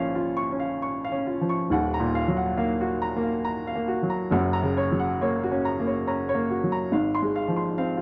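Wistful and reflective, this short 8-second cut from a longer neoclassical minimalist piano piece unfolds at 69 BPM in a rubato 3/4 in B-flat minor, tuned to A4 = 438 Hz, with a woody, polished upright piano playing alone up front, its short-sustain tone spanning Eb1 to Db6 over chords moving from Bbm through Ebmadd9 and Gb to Fm/Ab, set in moderate studio reverb within a dark production.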